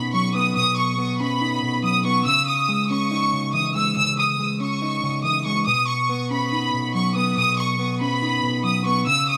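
Tense and menacing, this half-time hip hop excerpt at 141 BPM sets a clear, smooth bowed violin section with vibrato and digital delay up front on a high melody against a dark, clean, fingered electric guitar accompaniment, moving from Badd9 to C#madd9 and back inside a small room with light reverb.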